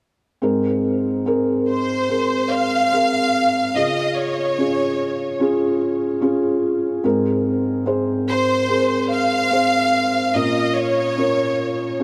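Tender and heartfelt, this pop ballad fragment at 73 BPM in Ab major opens at 0.4 seconds with a felt-muted upright piano laying down soft, dark, intimate accompaniment over Abadd9, Db and Bbm chords, joined at 1.7 seconds by a rich, close violin section singing the melody with vibrato, the whole mix soaked in a huge, dreamy reverb.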